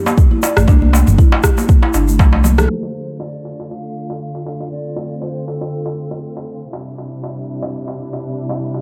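Spiritual and hypnotic, this afro house excerpt moves at 119 BPM in D minor with a light 16th-note swing. The opening groove stacks a deep, layered electronic kick up front with a produced afro-pop drum kit of crash cymbal, rim click and toms, bright high-tuned congas set back in a large room, a grainy close egg shaker, and a saturated clay-shelled darbuka. A woody marimba played with soft mallets spins arpeggios through dub echo and sidechain pumping, while a round sine sub bass sits up front and pumps along beneath it. A band accent at 2.6 seconds marks the turn to a Dm7 chord, where most of the rhythm section drops away and a lush, bowed string section takes over with sustained chords under a filter sweep, joined by an airy pan flute melody with a crisp chiff and dub echo. The flute stops at 6.5 seconds, leaving the strings and darbuka to carry the passage onto a C chord in a small, filtered room ambience.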